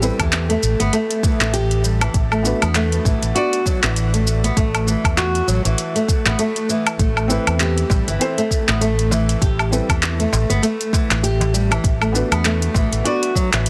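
Organic downtempo at 99 BPM in 4/4 with a swung sixteenth-note feel, this excerpt sits in A dorian and carries an earthy, mystical mood over chords moving from Asus2 through Bm/A and Amadd9. Up front, a fingerpicked flamenco guitar plays arpeggios with fresh strings, its tone colored by tape echo and shimmer reverb, while a round, punchy fretless electric bass holds the low end with sidechain pumping. A deep house drum kit of handclaps, metallic hi-hats, shaker and woodblock sits forward in a small room alongside a deep, layered electronic kick that enters at 0.2 seconds. In the background, a felt-muted upright piano offers mellow, intimate accompaniment with audible action noise and short sustain, drifting through tape echo, shimmer reverb and sidechain pumping, playing until 3.6 seconds and returning at 7.3 seconds. A small, crisp metal-shell darbuka struck with hard hands joins quietly at 7.9 seconds, all within a dense, heavily limited modern master.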